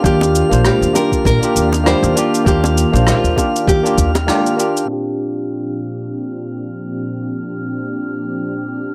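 A smooth, blissful sunset chillout excerpt opens with fingerpicked nylon-string guitar melody, a barky, up-front tine electric piano with tape echo, a lush detuned pad, a woody, growly pizzicato upright bass, a soft overdriven electronic kick, distant brushed cabasa and rim click, low-tuned bongos and a faint glassy harmonics texture; around a band accent at 4.3 s the guitar, bass and percussion fall away, and from 4.9 s the piano, pad and drifting overtones carry on alone under a filter sweep.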